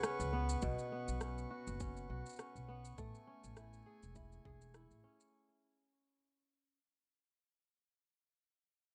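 A bright, ringing, fingerpicked kora with delay sits up front in this hopeful folktronica fragment at 102 BPM with a light 16th-note swing, its filtered arpeggios ringing on to 6.8 s over a woody pizzicato upright bass, electronic rim click and shaker, a tight electronic kick entering at 0.6 s, and airy, floating, filtered string-quartet chords moving from C#7sus4 through Bsus2 to Amaj7, set in a dark production with light reverb that fades out from the opening moment.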